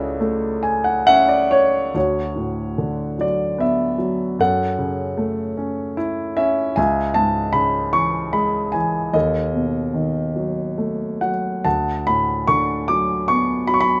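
This is a lyrical classical solo piano piece, reflective and melancholic, moving at 74 BPM in 3/4 with uneven, rubato beats and tuned to A4 = 441 Hz. A concert grand carries it throughout, spanning C#2 to D6 with deep bass, a smooth, vintage character and a short sustain, placed up front with audible action noise and an intimate feel. The piano opens with a fill from 0.2 to 1.9 seconds over F#m7 before a second section begins at 1.9 seconds on D69. The harmony then moves through F#m7, C#m and B7/D# before settling on D6. Light reverb gives the piano a gentle sense of space, and this 14.0-second passage is cut from a longer piece.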